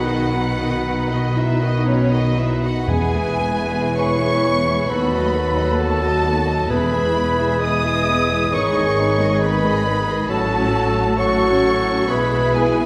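A rich, focused violin section carries the melody high above the orchestra in this tender, serene slow romantic movement in E major, moving at 54-68 BPM in 4/4 with a flexible rubato feel. Beneath it, a second violin line adds lush, expressive vibrato. A clear oboe with a smooth top, an airy, very quiet flute ensemble set at a distance, and a mellow, roomy clarinet weave supporting lines around the tune. A punchy bassoon and a soft-attacked viola section fill out the accompaniment, and a French horn section holds sustained chords with light vibrato in the background. Even, smooth cellos and focused double basses anchor the low end, while timpani struck with hard mallets sound articulate and dry until 8.0 s. The harmony moves from B through E, B7/D# and G#m to F#m/A before settling on E/B, and the orchestra sits in a wet scoring-stage reverb, heard from further back in the room, across this 12.9-second cut from a longer piece.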